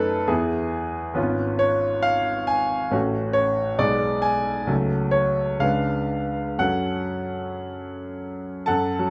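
A bright, brilliant grand piano with a smooth, vintage tone, long sustain and an up-front presence plays alone through this passionate romantic character piece in F# minor, a 2/4 fragment taken from a longer work, moving at a rubato 56-71 BPM across a range from G#1 to A5 and through a progression that settles on F#m at 6.6 seconds, all held in a moderate large studio reverb.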